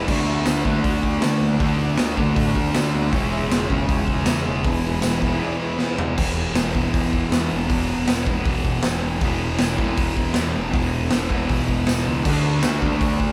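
Garage rock with a rowdy, swaggering energy opens on a double-tracked fuzz guitar riff, up front, over a growling overdriven bass and a gritty, saturated drum kit with a punchy kick and a pumping stone-room sound, while a bright tambourine jingles in the background and a reedy vintage combo organ with heavy vibrato holds sustained chords through a break starting at 5.4 seconds and a drum fill at 5.8 seconds, dropping out at 6.1 seconds before returning at 12.2 seconds in this live-in-one-room excerpt cut from a longer piece.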